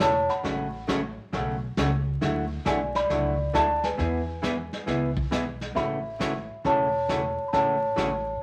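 A swung 4/4 at 135 BPM carries this cheerful, down-home western swing clip in A major, with a vintage brush kit of brushed snare, hi-hat and tight kick setting a warm, rolled-off pulse beneath a woody pizzicato upright bass. Up front, a bell-like celesta with soft felt hammers sings a sweet, airy melody. A dark, clean hollow-body archtop guitar picks the accompaniment through F#m/A, Dadd9 and E, moving to A6 as a new section begins at 5.8 s, before the guitar drops out at 8.1 s. Vinyl crackle and a moderate club reverb give the whole piece an old-time patina.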